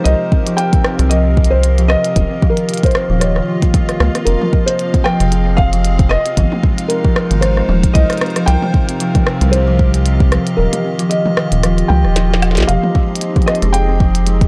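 A felt-muted upright piano carries a soft, intimate melody through tape echo over a hollow, flute-like pad with chorus, while a bubbling, detuned texture of random filter steps sits in the background with sidechain pumping, opening this cerebral, glitchy IDM excerpt in F minor at 114 BPM with a light 16th-note swing. A buzzing, woody kalimba plays arpeggios, a rubbery, wave-folded square bass sits up front, and a deep electronic kick joins a glitchy kit of tiny snare, clicky hats, rim clicks and toms, as the harmony cycles through chords from Cm7 to Abmaj7 and back to Fm7. The kick drops out at 10.6 s before a drum fill from 12.2 s, and the whole mix sounds dry and gritty, as if captured on hardware.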